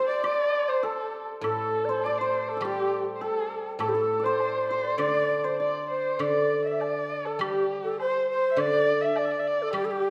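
Chinese traditional chamber music with a pastoral, graceful mood and a free, rubato feel, cut from a longer piece. An airy bamboo xiao carries the melody up front with a straight tone and crisp attack, while a dark, bowed erhu with vibrato and portamento and a shimmering hammered dulcimer trace second lines, the dulcimer falling away at 8.1 seconds. A mellow guzheng played with fingerpicks adds silvery low accompaniment from 1.4 seconds, a close woodblock sits in the background, and a recital hall's reverb surrounds the ensemble.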